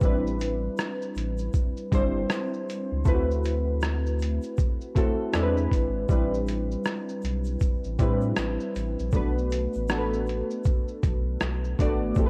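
The boom bap sampler-style drum kit stands out most, its thumpy kick, hi-hat, rim click and shaker sounding compressed, pitched down and gritty with vintage 12-bit sampler grit, as if re-recorded in a small room and placed up front. This is a hazy, melancholic lo-fi hip hop cut from a longer piece, moving at 79 BPM in 4/4 with a 16th-note swing. Mellow analog keys carry the accompaniment through chorus, phaser, cassette tape and a low-pass filter, their detuned pulse and sawtooth tones shaped by a filter sweep. Beneath them, a soft dub sub bass holds a deep, round, sustained tone with tube saturation. A grainy, bright tube shaker sits in the background. The harmony drifts from Am11 through D13 and E7b13 and back to Am11 before shifting to Bm7 at 9.1 seconds, all wrapped in worn, warbling old tape with little reverb.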